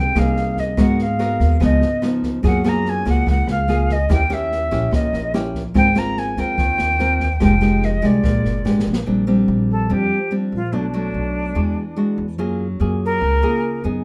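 A small, moderately reverberant room frames this sunny, romantic bossa nova excerpt, where an airy metal jazz flute with vibrato and a crisp chiff carries the melody over up-front, fingerpicked nylon-string guitar chords with audible finger squeak and a woody pizzicato upright bass, while a dark, rolled-off open jazz drum kit of boomy kick, rim click and snare plays from 0.2 seconds until a fill starting at 8.7 seconds brings its part to a close.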